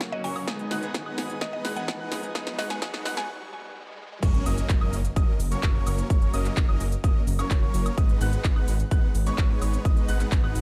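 An anthemic, emotional festival progressive house excerpt at 128 BPM in G# minor opens on a build-up in which a twangy clean electric guitar, a very quiet airy pad, dark grand piano arpeggios in the background, huge bright supersaw chords under a filter sweep, a thick detuned saw bass, a punchy layered drum kit with a fill, a woody mallet-like synth pluck melody and a riser drive toward a brief break at 3.3 s, before the drop lands at 4.2 s with an impact as the supersaw riff, bass and piano pump against the sidechain over an up-front, tape-warm kick in a dry mix.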